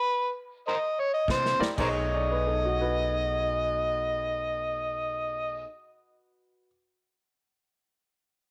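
Electric blues shuffle in B mixolydian with a swaggering, gritty mood, swinging in 4/4 at 118-136 BPM and slowing over the opening seconds, with an overdriven, amplified harmonica up front playing a jazz-style solo alone through a stop-time opening until 1.3 s, full of tongue slaps, scooped notes, light vibrato and slapback echo. At 1.3 s a punchy, polished acoustic drum kit plays a short fill with crash and medium-tuned snare, while a dark, slightly broken-up, lo-fi electric guitar picks a riff and a woody, thumpy pizzicato upright bass settles underneath. Two upright pianos sit in the background: a clear, slightly detuned one with long sustain comping, and a mellow, vintage, smooth-toned one adding a second line from 2.1 s, all in a plate reverb and small room sound.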